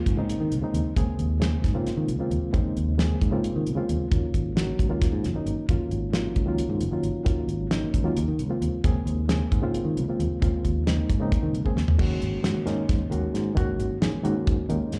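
A reedy, worn electric piano, slightly out of tune and lightly overdriven with tremolo and slapback echo, opens this intense, nocturnal electric jazz fusion cut in 7/8; at 0.1 s a bright, punchy fingered bass and a dry, damped 70s drum kit with a fat snare and tight kick join it, moving through suspended chords until a drum fill at 11.7 s leads into a new section at 12.0 s, captured live through a club PA with light reverb.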